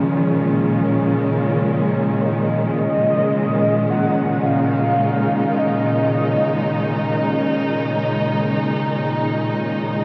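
Through a worn, warbling cassette haze and a huge wet reverb, this serene ambient fragment in Db major at 53 BPM in 3/4 rests on a dark, bowed chamber string section sustaining a Db69 chord up front with shimmer reverb, over a detuned, evolving analog drone on Db3 with chorus and phaser in the background, while a velvety synth lead with vibrato sings a brief melody between Eb5 and Gb5 from 2.3 to 7.3 seconds through chorus, delay and shimmer.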